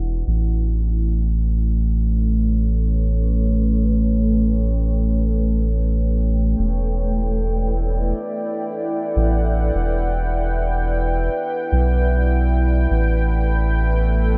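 Ambient dub in free time and E dorian, this hazy, meditative fragment cut from a longer piece rests on a deep, dark pad of detuned sawtooth and sine layers, chorused and bathed in its own reverb, holding sustained chords from A7 to Em7 at 6.6 seconds and on to a bare A7 near the close. Beneath it, a soft, round sub bass with a quick attack sits up front in the low register, its triangle-and-square tone giving the music a sturdy floor. The whole carries a light reverb that keeps the sound moody yet full-bodied.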